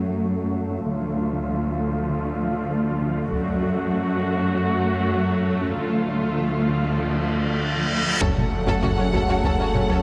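A tense, futuristic hybrid orchestral and electronic film cue at 98 BPM in F# minor opens on an up-front, rich cello section bass, a filtered viola section, a cloudy, evolving granular pad with tremolo in the background, and a very quiet, nasal sawtooth arpeggio, with chords moving between F#m and Dm. Distant taiko hits land at 3.3 seconds, and a reverse cymbal from 6.9 seconds rises into an electronic impact at 8.2 seconds. There the full score arrives, with a lush, vibrato-laden violin melody on a high F#, a background violin line, mellow horns, bright trombones, a very quiet double bass section and a thick, saturated sub bass, all within a moderate scoring-stage reverb.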